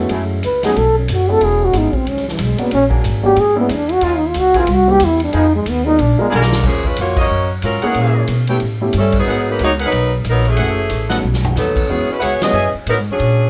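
A brassy, sultry big band swing in 4/4 opens on a dark, close-miked solo trombone with plate reverb carrying the melody over clear sustained chords from the trombone section, an intimate baby grand piano with audible action noise, a woody, growly pizzicato upright bass and a natural, punchy drum kit, before a vintage saxophone section takes up the melody at 6.3 seconds and a tight trumpet section adds vibrato-tinged stabs from 7.2 seconds, with drum fills and band accents in a moderate club room.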